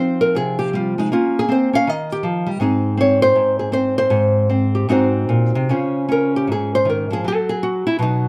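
A fingerpicked nylon-string guitar with a dark, woody tone, old strings and a small, up-front sound carries this relaxed, warm solo jazz excerpt in Ab major at a rubato, swung 158 BPM, moving from Fm7 through Bbm, Ebadd9 and Ab to Ab7 and Dbmaj7 before the chords drop away at 7.2 seconds, all within a moderate studio reverb.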